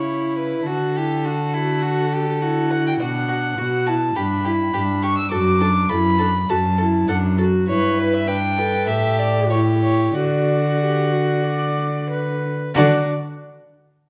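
The string quartet enters together on a C#m7 chord, launching a quick, stormy classical-period movement in D major that is cut from a longer piece. All four players use gut strings in period style, giving the ensemble a reedy edge, with a tempo that moves between 90 and 104 BPM in 4/4 under a rubato feel. Sitting close and up front, the first violin carries the melody across a range of A4 to E6 with a nasal, airy bow, while the second violin shades a narrow second line with light vibrato. The viola fills in a warm accompaniment, and the rich cello, also up front, anchors the bass between F#2 and D3. The harmony travels through D, Bm, G and D/F# before an A5 resolves to D at 10.1 seconds, and a moderate recital hall reverb wraps the dramatic playing in a dark production.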